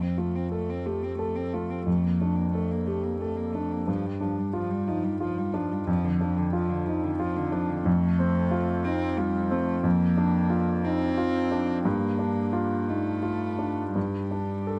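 A worn, clear concert grand piano with deep bass and long sustain sits up front as accompaniment while a single intimate, sul tasto cello bows a second line with a soft attack, airy tone and light vibrato, the pair carrying a melancholic, reflective neoclassical passage in a rubato 6/8, caught by close, detailed microphones in a nearly dry room.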